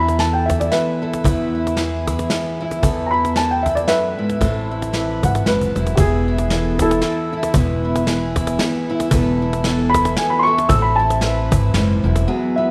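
A gently swung 3/4 lilt at 114 BPM carries this nostalgic, gentle acoustic folk fragment in E major, where a polished, woody upright piano leads the melody over fingerpicked steel-string guitar, shimmering octave-doubled twelve-string arpeggios, pizzicato upright bass, a snappy, close cajon and a soft brushed drum kit with dark cymbals that adds a short fill at 5.6 seconds, the ensemble set in a moderate echo-chamber reverb as the chords circle through Esus4, E and Amadd9.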